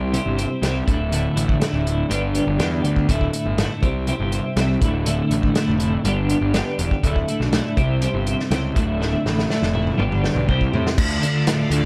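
A short cut of psychedelic rock with a small-room sound, hypnotic and trippy, moving at 122 BPM in a straight 4/4 in D dorian. A twangy, double-tracked twelve-string electric guitar sits up front, bright and clean with tremolo, playing a riff over a loop of C, Dsus2, G and Dmadd9 chords. Beneath it, a fuzz-driven picked bass adds punchy, overdriven weight, while a vintage drum kit with a tight kick, dark cymbals and a rolled-off top keeps time on kick, snare, hi-hat, toms and crash. The drums play a fill from 9.0 to 11.0 seconds, and at 11.0 seconds the harmony lands on D minor. At that moment a swirling string machine with phaser and ensemble chorus enters in the background, holding sustained chords until the cut ends.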